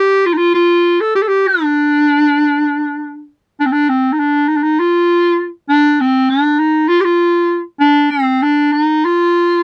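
A dry, close studio sound in a 1970s style frames this short Turkish piece, with very little reverb around the single instrument. A bright clarinet plays alone from 0.0 to 9.6 seconds in free time, moving through makam kurdi on D within a compact range of C4 to A4. Its tone is punchy and forceful, shaded by vibrato and a jazz-style inflection that sits up front in the mix. The mood is soulful and longing, and the line shifts into a new section at 3.6 seconds. It is a brief cut from a longer performance.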